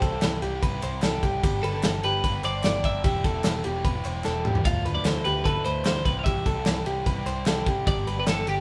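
A band playing live in one room with moderate studio reverb opens this bright, youthful excerpt of jangly indie pop at 149 BPM in C major, where a compressed, twangy twelve-string electric guitar carries the melody over scooped clean electric guitar arpeggios, crunchy overdriven guitar accompaniment and a dark, round, foam-muted picked bass, while an up-front acoustic drum kit with a tight kick and medium-tuned snare plays a fill at 4.2 s and very quiet, crisp group handclaps sit close and dry beneath the chords moving from C through G, Em and Dmadd9.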